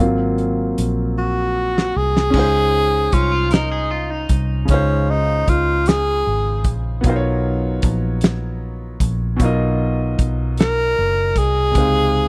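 Intimate and warm, this slow six-eight R&B excerpt opens on a natural-sounding concert grand piano with deep lows, a round, foam-muted fingered electric bass and an up-front soul drum kit with a fat snare, tight kick and dark cymbals, the drums adding a fill from 1.2 seconds. A breathy tenor saxophone carries the melody in a jazz style with vibrato and scooped notes, joined briefly from 3.1 seconds by a bright, twangy, slightly broken-up picked electric guitar with spring reverb. Lush extended chords and a studio ambience round out the sound.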